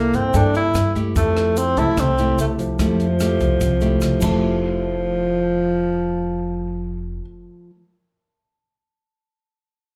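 Relaxed and sunny, this short bossa nova passage, cut from a longer piece, is heard as a live gig through the venue's PA with light club reverb, led by an up-front tenor saxophone with a dark, breathy subtone, scooped notes and a slapback echo over fingerpicked classical nylon-string guitar, complete with finger squeak, and a woody pizzicato upright bass. A compact cocktail drum kit with dry rim clicks, hi-hat, a punchy kick and dark crash cymbals plays until about 4.3 seconds alongside a grainy egg shaker in the background, which carries on until about 4.5 seconds. A baby grand piano sits further back with a natural, short-sustained tone and its own slapback echo, lingering until 10.0 seconds after the other parts have stopped.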